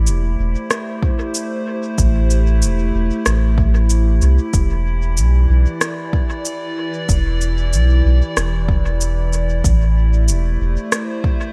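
Lightly reverberant and hazy, this meditative ambient dub excerpt has a swung sixteenth feel. A warbling, nostalgic lo-fi pad with chorus, phaser and detuned tones drifts through Am7 and Em7 over a round, soft sub bass sitting up front. Electronic cabasa and rim clicks trail dub echo, and a deep, overdriven kick with a small-room character joins at 1.0 s.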